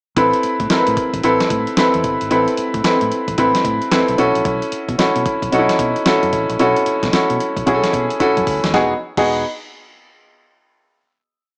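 This upbeat, flirty new jack swing piece at 112 BPM bounces on a hard-swung beat from a clean, sampler-style 12-bit drum machine with a thumpy kick and medium-tuned snare, under a dark, foam-muted fingered electric bass that plays a round, punchy synth-funk line with muted ghost notes and chromatic approach notes. Up front, a clear, vintage grand piano with short sustain carries the harmony in syncopated rootless chord stabs with grace notes, moving from Amadd9 to B7sus4. A drum fill at 8.2 seconds leads into a closing Emaj7 chord at 8.7 seconds, all set in light reverb with a small-speaker sound.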